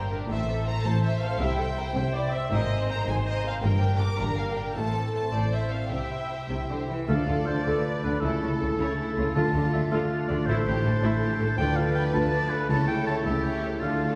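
Cinematic orchestral music in 6/8 at 107 BPM, determined and adventurous, cut from a longer piece and heard from further back in a wet scoring-stage hall. Clear, intense violin sections carry the melody and a second line over bowed violas, background harp arpeggios, and rich, smooth cellos and double basses. At 7.1 s the music settles into D dorian as a punchy, close-miked cor anglais, a very quiet clarinet and an airy silver flute add second lines, dark distant French horns hold sustained chords, and dry timpani sound until 9.9 s.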